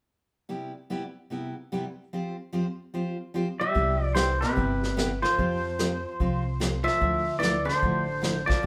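Cheerful and down-home, this western swing country piece moves at 148 BPM in a swung 4/4 in C major, opening on an up-front, full-bodied dreadnought acoustic guitar picked on old strings through Cmaj7 and Fsus2. At 3.6 seconds a twangy, compressed pedal steel takes the melody with fingerpicks, slide and volume swells, while a dark, hollow-body archtop guitar adds a low second line. By 3.8 seconds a woody, thumpy pizzicato upright bass on gut strings and a vintage brush kit with a punchy kick and rolled-off top join in, the band sharing one room with a wet studio reverb as the chords move on to Dmadd9.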